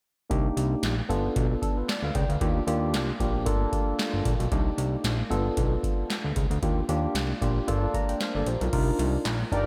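Early-eighties boogie funk in C dorian at 114 BPM with a swung sixteenth feel, this danceable, late-night excerpt cuts from a longer piece. It is carried by a clean tine electric piano with lush chorus, a fat, saturated sawtooth bass with a filter pluck, and a booming analog drum machine with deep kick, crisp snare and metallic hats, all cycling through Cm7, G7, Ebmaj7 and Gm7 before landing on Cm11. A faint, hollow group handclap appears at 9.3 seconds and a brief, dark synth brass line with chorus and phaser follows at 9.5 seconds, the whole mix dreamy and soaked in cathedral reverb.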